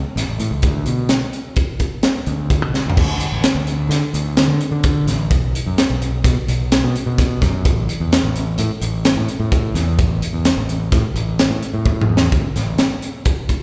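Intricate and wistful, this math rock and midwest emo excerpt moves at 128 BPM in 5/4 with a straight feel in D major, heard as a live gig through the venue's PA with recital hall reverb. A growling fingered electric bass, bright and overdriven, sits up front from the start to 12.8 seconds, while a crisp fusion drum kit with a high-tuned snare, tight kick and gritty, saturated small-room tone plays crash, hi-hat, snare and toms until 13.6 seconds. Drum fills mark the turns into a longer middle passage at 2.7 seconds and back to the opening material at 11.9 seconds.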